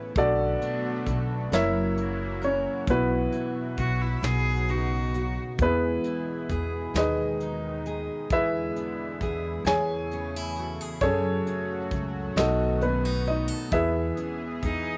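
A gentle 6/8 lilt carries this intimate, hopeful acoustic folk-pop ballad, with a bright, fingerpicked steel-string guitar and a shimmering, chorused pulse-width pad holding sustained chords from the very start. A woody, up-front upright piano takes the melody, supported by a dark pizzicato upright bass and a soft brush drum kit with a punchy kick, all sitting in light studio reverb. A clear, bowed cello adds a brief vibrato second line at 3.8 seconds and returns at 14.6 seconds, as the chords drift through a hopeful progression that settles home on E.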